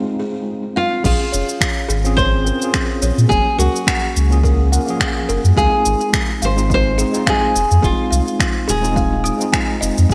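Swung sixteenths at 106 BPM in 4/4 carry this relaxed sunset chillout excerpt in Bb minor. It opens with a filter sweep on a worn, slightly out-of-tune tine electric piano, lightly overdriven and roughened by 12-bit sampler grit, beside an up-front, full-bodied nylon-string guitar melody with finger squeak and delay, while a dark, woody buzzing kalimba plays gritty, echoing arpeggios in the background. At 1.0 s a deep, round sine sub bass enters with a punchy, layered electronic kick and a deep house kit of crash cymbal, finger snaps and shaker under gated reverb, as the chords move from Bbm9 through Gbmaj7 and Dbmaj7 to Fm7, all set in a lush hall reverb with bright 1980s-style digital production.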